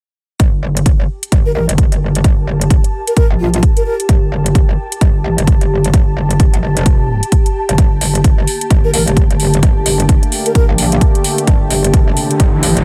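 This swaggering, gritty bass house excerpt opens at 0.4 seconds with a punchy, up-front electronic kick, metallic hats and a saturated, aggressive FM wobble bass, all set at 130 BPM in G minor with a 16th-note swing over a Gm(add9) chord. The bass growls low with chorus and overdrive, pumping against the kick, while the tape-tinged drums drive the groove. At 1.5 seconds an ethereal, detuned pad drifts in high above, its airy haze pumping softly, and a breathy, hollow concert flute sings a short close-miked line trailed by dub echo, returning between 8.8 and 10.6 seconds. From 7.8 seconds a sweeping, wave-folded pad adds resonant sustained chords colored by chorus and phaser, and an electronic riser closes the section in its final moments, all wrapped in a digital ambience.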